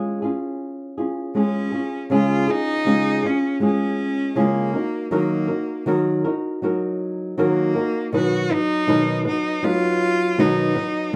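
A warm, thumb-plucked flamenco guitar opens this carefree, heartfelt acoustic pop excerpt at 80 BPM in 4/4, with a light swing on the sixteenths and tuning a touch under standard pitch. At 1.4 seconds a single bowed cello takes up the melody, clear, smooth and even, with vibrato, sitting up front beside the guitar as the harmony moves from C# to D#m to B. A wet, short studio reverb surrounds both parts, and the rough home-demo mix gives the piece an unpolished feel.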